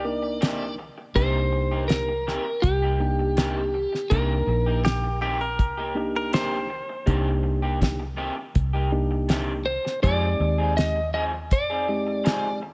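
An up-front electric slide guitar, slightly broken-up and compressed, sings the melody of this brooding, soulful soul-blues excerpt at 81 BPM in C minor, stepping aside at 4.8 seconds for a bright, twangy, direct-recorded clean guitar line and returning at 9.7 seconds. Beneath it, a mellow, reedy electric piano holds the accompaniment, a lo-fi guitar through a small old amp adds dark stabs with subtle chorus, and a round, punchy, foam-muted bass sits firmly forward. A cloth-damped, thuddy drum kit with a fat snare, tight kick and rolled-off top keeps a straight 4/4 groove as the harmony moves from Cm7 to Fm7 at 10.0 seconds, all in a small, lightly reverberant room.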